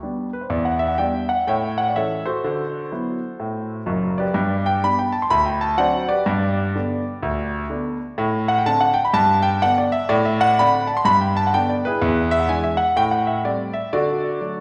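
Stride piano jazz with a swinging, playful feel, this short cut from a longer piece features a solo concert grand that plays for the full 14.6 seconds. The piano sounds clear yet worn, with a deep bass and a present, up-front placement, as it swings through changes from Em7 and D13 to G before closing on E7, Am7 and D. A wet, lingering reverb gives the instrument the open ring of a church or concert hall.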